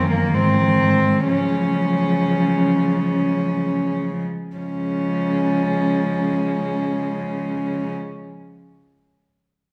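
Classical and serene, this lyrical passage for cello ensemble sways in a rubato 3/4 and slows through its first 4.5 seconds, as a clear, nasal cello carries the melody up front over a dark second line with vibrato set in the background, a floating, pure accompaniment cello and an intimate bass cello, all four bowed sul tasto by single players and heard from further back in a wet recital hall.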